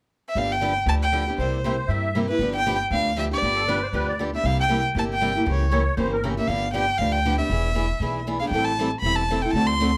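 Heard in a moderate club-sized reverb with the violin, guitar and bass placed up front, this short cut from a longer piece of acoustic string swing in the jazz manouche style sounds playful and charming. It runs at a brisk 235 BPM in 4/4 with swung eighths, sits in G mixolydian, and is tuned slightly low to A4 = 438 Hz. A single bowed violin carries the melody from 0.3 seconds, its soft attack, vibrato and expressive portamento giving the line a close, intimate voice. A picked parlour guitar with fresh strings and a boxy tone supplies the accompaniment, while a thumpy, woody pizzicato upright bass on gut strings anchors the bottom through chords moving from G7 and C7 to a C#dim7, then E7 and Am7. Between 1.6 and 6.3 seconds, a reedy musette accordion with a shimmering tuning adds a second line just behind the front trio.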